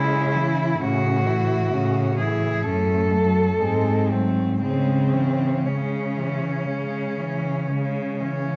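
This classical excerpt for cello ensemble is melancholic and solemn, moving at a slow, rubato 57-66 BPM in 4/4 in C# minor. Four bowed cellos, each a single player, sound together throughout its 8.6 seconds. Up front, a rich melody cello sings smoothly and evenly with vibrato from a distant placement, while a close, expressive bass cello with a soft attack, vibrato and portamento anchors the low end. Behind them, a clear, focused second-line cello and a warm accompanying cello with expressive vibrato and portamento fill in the inner voices. The harmony moves from C#m through A and F#m to a tense G#7b9 before settling back on C#m at 4.6 seconds. A dark production and a wet concert-hall reverb with a 2.2-second decay give the ensemble a spacious, sombre glow.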